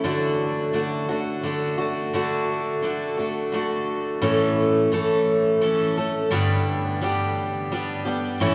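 Set in an unhurried three-beat waltz time with a straight feel, this heartfelt, nostalgic country excerpt features a solo picked steel-string acoustic guitar, bright and full-bodied with fresh strings and a dreadnought's depth, sitting up front in the mix. A new section arrives at 2.1 seconds, and the harmony moves from D to A at 4.2 seconds and then to G at 6.3 seconds. The guitar rings out in a church or concert hall, bathed in a long, wet cathedral reverb that lets every note linger.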